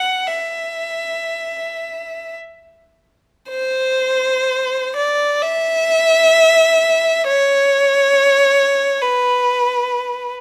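A single violin opens this brief classical passage, heard alone and up front in free time, with an expressive, mournful and lonely character. The bowed tone is rich and focused, carried by vibrato, and the line stays within a narrow range from B4 to F#5. A light reverb gives the solo a sense of space around the one player. The first phrase gives way to a second section at 3.5 seconds, and the violin continues until 10.3 seconds, as the fragment is cut from a longer piece. Tuned to A4 = 440 Hz, the recording keeps attention entirely on the lonely, mournful voice of the instrument.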